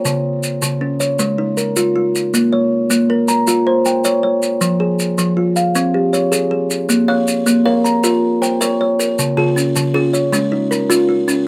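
Southern African traditional music in an mbira-style interlocking cycle, trance-like and hypnotic at 105 BPM in a straight 12/8 in Bb dorian, where an up-front, woody kalimba rings out bright thumbnail-plucked arpeggios over grainy, saturated maracas until a second, buzzing kalimba with short, airy notes joins at 7.1 seconds, all captured by close, detailed microphones with little reverb in this excerpt from a longer piece.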